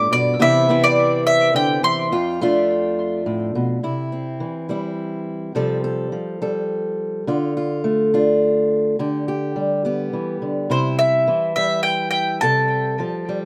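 Acoustic folk in C major at 105 BPM in a gentle 3/4, this short passage from a longer piece has a warm, gentle feel. A fingerpicked archtop guitar plays up front throughout, its warm accompaniment marked by audible finger squeak under chords such as Cmaj7, F6, Dm and G/D. The up-front, double-strung mandolin carries the melody with a touch of tape echo from the opening until 3.2 seconds and returns at 10.7 seconds, all captured by close, detailed microphones in light reverb.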